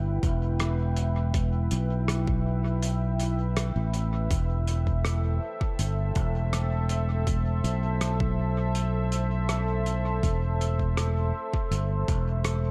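A deep, dark pad of detuned sawtooth unison with a sub octave, softened by chorus and its own reverb, opens this spacious, meditative ambient dub fragment alongside a bright, growly fingered electric bass sitting up front. Just after, a muffled, cloth-damped acoustic kit with a lo-fi, rolled-off top taps out hi-hat and rim clicks through a dub echo, while a layered, overdriven electronic kick adds weight beneath. The harmony moves once, a little after 4 seconds, and the whole piece rests in a light reverb.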